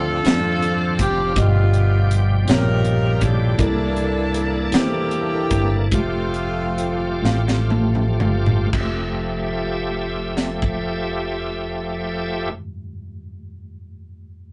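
A slow gospel sway in 6/8 at 37-54 BPM, this jubilant, uplifting excerpt in F major moves through Dm9, G7alt, C13 and Fmaj9, easing its pace from 3.6 to 8.7 seconds, while the crisp fusion drum kit, with its high-tuned snare and punchy kick, and the tine electric piano both play fills from 7.2 to 8.7 seconds. A tight, bright saxophone section with jazz vibrato carries the melody until 7.7 seconds, over shouting tonewheel organ chords colored by slow rotary speaker, light overdrive and chorus vibrato, a fingered electric bass, and a worn, slightly out-of-tune electric piano tucked in the background that plays on alone until 14.5 seconds. The sound is a rough rehearsal-room take with tube saturation, a dull top end and a short, wet booth ambience.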